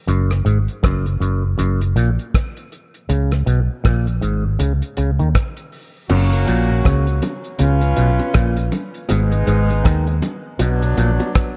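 Roots reggae with a warm, uplifting mood and a swung sixteenth-note lilt, taken from a longer piece. From the start, a cloth-damped drum kit sits up front with a thuddy, tight kick, dark cymbals, hi-hat, rim click and crash, its top rolled off and dry. Beside it, a vintage muted, fingered electric bass plays round and punchy with a foam-muted, amped tone, the loudest part in the mix. A clean clav carries the riff through an auto-wah envelope filter and a combo amp, sounding percussive and stringy. At 6.1 seconds a horn section enters on a second line with light vibrato and a smooth top, its phrases trailing into dub echo, while low-tuned bongos played with hard hands add a round, small-room texture. The chords move from a C#5 to F#, C#7, G#m and Bm, all within a dark production framed by light reverb and studio ambience.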